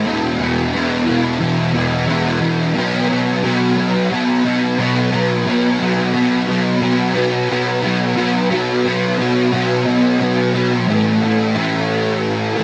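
A steady, straight 4/4 pulse underlies this short rock passage, cut from a longer piece, with a wistful yet blissful mood. A lone fuzz guitar carries the whole recording from start to finish, picked and double-tracked, sitting up front with a compressed, distorted edge. Its tone is warm and fuzzy, colored further by ensemble chorus and tape echo, and it moves between E5, B5 and A5 power chords in its low register. The shift to A5 at 10.9 seconds opens a brief closing section that runs to 12.6 seconds. A huge ambient reverb with a long 4.1-second tail surrounds the guitar, lending the sound a hazy, spacious glow.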